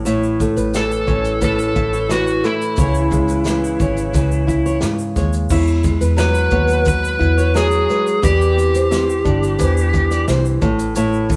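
Easy-going and sunny, this short fragment of acoustic pop at 88 BPM in E major sets an up-front overdriven slide guitar melody, entering at 0.8 s, over a small, up-front fingerpicked nylon-string guitar, a dark, round, foam-muted vintage electric bass, a full-bodied jumbo steel-string guitar arpeggiating with finger squeak in the background, a natural country drum kit with a punchy kick and medium-tuned snare, and a grainy, bright egg shaker, all played live together in a stone room with moderate reverb across chords of A, C#m, Eadd9 and Cadd9.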